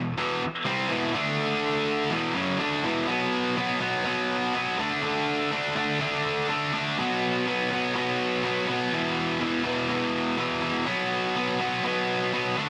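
Rock at 123 BPM in 4/4 with a straight, aggressive and heavy feel, this short cut from a longer piece features a lone high-gain electric guitar, picked, bright and double-tracked, sitting up front with distortion and analog delay across a range from E2 to D4. It opens on Em before moving through D5 and E5, then from 3.1 seconds shifts to a new section built around B5, D5 and E5 power chords. Light reverb surrounds the playing, and the master is dense and heavily limited in a modern style.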